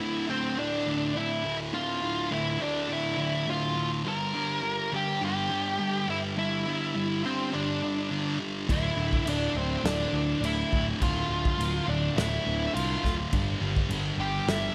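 A smooth, overdriven lead guitar sings a dark, angsty melody up front over a thick, double-tracked fuzz guitar riff with slapback echo in this quiet-loud alternative rock excerpt in D minor at 104 BPM, cut from a longer piece, moving from Dmadd9 to Gm, until at 8.7 seconds a growly, amped picked electric bass and a loose indie drum kit with a fat snare, tight kick and crash cymbal enter, all set in a lush hall reverb for a big arena sound.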